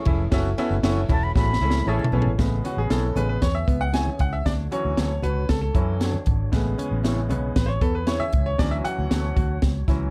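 A brilliant, intimate grand piano with audible action noise takes a solo from 2.4 s in this joyful, uplifting fragment of uptempo 1960s-style soul at 116 BPM in A major, moving through F#m7, Amaj7 and Dmaj7 over a round, foam-muted electric bass and an up-front cocktail drum kit with a high-tuned snare, tight kick and dark cymbals whose fill leads out of a brief pure, expressive flute melody. Behind them sit a clean hollow-body jazz guitar riff, twangy slightly broken-up guitar stabs with spring reverb and analog delay, very quiet low-tuned congas, and a fat, lightly overdriven tonewheel organ holding chords through a slow rotary speaker with key click, all in a dark production with light reverb.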